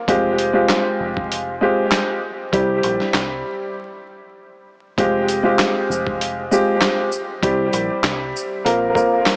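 A woody upright piano sits up front in this tough, gritty boom-bap hip-hop excerpt at 98 BPM in F harmonic minor, its tape-worn tone filtered and trailed by dub echo as it moves from Fmadd9 to C. A compressed, pitched-down sampler kit of thumpy kick, medium-tuned snare, handclaps, hi-hat and shaker swings under it, while a dark, round fingered electric bass adds a punchy low end. The chords drop out for a break from 3.8 to 5.0 seconds before the Fmadd9 returns, reaching Bbsus2 at 8.7 seconds, all framed by vinyl crackle, light reverb and a small-speaker sound.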